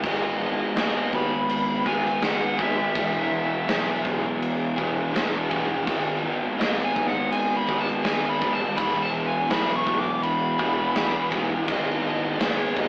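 A blissful, wistful shoegaze and dream pop passage at 82 BPM opens with an up-front, hollow-body overdriven semi-hollow guitar riff, a thick fuzz guitar riff and an overdriven fuzz picked electric bass set back in the mix, all driven by a polished, gated 80s drum kit with bright cymbals, a medium-tuned snare and a punchy kick. From 0.1 seconds a smooth overdriven lead guitar carries the melody high above, while a very quiet, warbly tape-like pad of detuned sawtooth tones with chorus and phaser sustains nostalgic chords as the harmony moves between G#m and Eadd9. The sound is that of a rough rehearsal-room recording, with wet reverb, warm saturation and an AM radio tint.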